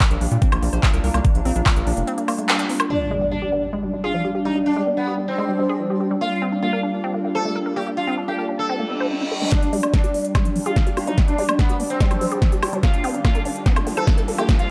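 A bright, buzzing sitar with shimmering sympathetic strings carries the melody from 2.9 s in this driving, alien psychedelic trance excerpt at 145 BPM, arriving with an electronic impact, over a woody, wave-folded pluck riff with tape echo, a bubbling, randomly stepping filtered texture holding sustained chords, and a warbly, nostalgic lo-fi pad in the background, all pumping to the beat. A knocking, overdriven kick and a punchy big-room kit of handclaps, crisp hi-hats, snare and woodblock open alongside a round, deep analog bass. After a reverse cymbal and riser lead in from 8.9 s, the drums return at 9.5 s for a build-up with a drum fill and filter sweeps on the sitar and a synth arpeggio sound. A very quiet nasal vowel-sweep wobble bass briefly joins from 11.0 s.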